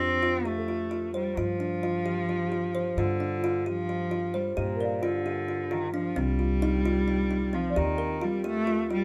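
Contemporary chamber music in a restless, pensive 7/8 at 262 BPM in G minor, where a rich, focused bowed cello with vibrato and a ringing, hollow-boxed kalimba sit up front over thumpy pizzicato upright bass on gut strings, while a delicate, bell-like celesta drifts airily in the background until 8.0 seconds, all in light reverb as the harmony moves from F through Gm, Cm and Eb.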